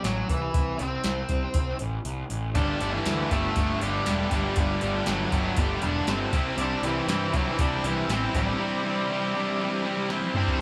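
A dark, up-front octave-fuzz lead guitar carries the melody over a fuzzy, overdriven picked bass and a soft vintage rhythm box with deep kick, crisp snare and metallic hats in this anthemic, restless quiet-loud alternative rock excerpt at 119 BPM, and after a short break three more guitars come in around 2.6 seconds as the harmony moves from C to Gadd9 and Cadd9: a bright, tight distorted riff, an overdriven riff in the background, and very quiet, twangy arpeggios from a guitar at the edge of break-up; the bass drops out at 8.5 seconds and a drum fill arrives at 10.1 seconds, with the band heard playing live together in one room under a moderate large studio reverb.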